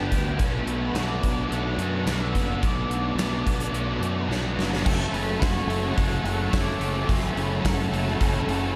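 A straight 4/4 pulse at 108 BPM drives this dreamy, hazy shoegaze and dream pop excerpt. Up-front gated 80s drums with bright cymbals and a growly fuzz bass anchor two overdriven guitar riffs, one biting with reverse reverb and one crunchy with ensemble chorus in the background, while a twangy, very quiet clean guitar arpeggiates and a dark octave-fuzz lead sings through tape echo. The chords move from Bm7 to F#m after a drum fill at 4.3 seconds, and an ethereal, detuned pad enters at 6.0 seconds, all soaked in a lush hall reverb.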